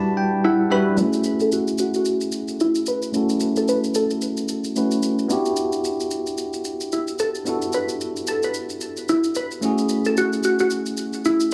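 A bell-like tine electric piano opens this soulful, late-night amapiano excerpt with a short fill, bright, clean and up front over a brief break. A glassy wavetable pluck enters at 0.4 seconds to carry the melody, its crystalline, slightly nasal tone given fast attacks, decaying notes, a noise layer, chorus and tape echo. From 1.0 seconds a layered electronic shaker sits low in the mix within a swung sixteenth-note feel, while a filter sweep runs through the rest of the clip. The harmony rocks between Em9 and F#m9, with the electric piano's chords supporting the pluck line. Light reverb lends a small-room ambience to the intimate, polished sound.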